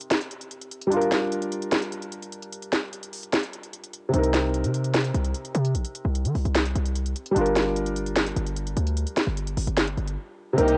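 Over a lo-fi home-cassette sound with light reverb, a soft, felt-muted upright piano sits up front on Cm7 and Gm7 chords through a low-pass filter while a trap drum kit of finger snaps, crisp hats and a sharp snare carries vintage 12-bit sampler grit in a half-time feel; a punchy, heavy 808-style bass enters at 4.1 seconds, and at 10.6 seconds a boxy concert grand piano and a distant, bowed chamber string section with vibrato arrive just as this menacing, melancholic trap excerpt is cut off.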